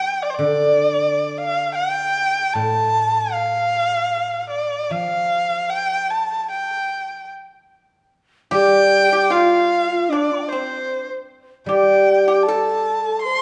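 A warm, bowed erhu carries a graceful, pastoral melody with vibrato and portamento over a ringing, silvery guzheng in this rubato Chinese chamber piece around 76 BPM in G shang mode, and an airy, hollow low xiao and a dry, percussive pipa join as second lines at 8.5 seconds, all set in a wet recital hall reverb.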